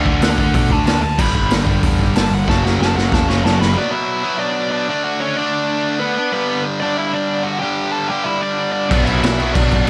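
A straight 4/4 pulse at 186 BPM drives this angry, raw punk rock piece in B minor, where a nasal lead guitar with a parked wah, overdriven and touched with tape echo, plays a solo melody through the first 3.8 seconds over a bright distorted electric guitar riff up front, a cranked stack guitar riffing in the background, a growly, punchy overdriven picked electric bass and a gritty, saturated garage drum kit with a boomy kick that rolls into a fill from 2.5 seconds, before the drums, bass and stack guitar fall away and the two remaining guitars carry on until those three return at 8.9 seconds, all in a dry mix with little reverb.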